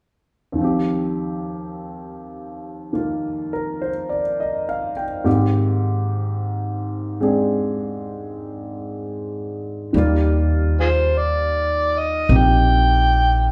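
Jazz ballad at a slow 51 BPM with a swung, romantic and tender feel in Eb major, opening on an intimate, up-front concert grand piano with deep bass and audible action noise, joined at 9.9 seconds by a woody, thumpy pizzicato upright bass on gut strings and at 10.8 seconds by a gritty, overdriven, amplified harmonica solo with light vibrato, scooped notes and tongue slaps, the band playing live in one room bathed in a wet large-studio reverb.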